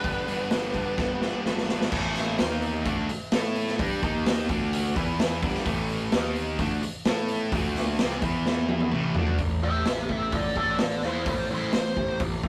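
A fuzzed, wah-soaked lead guitar with a compressed, up-front tone flashes briefly at the start and returns at 9.6 seconds for a short solo, giving this heavy, gritty blues rock and southern rock excerpt its snarl. Beneath it, a bright, double-tracked overdriven rhythm guitar drives a picked power-chord riff until 9.4 seconds, while a growly fuzz bass and a raw garage drum kit, with a boomy kick, pumping room sound and drum fills, hold the straight 4/4 groove. The whole take has a rough rehearsal-room feel, with tube saturation and a short small-room reverb.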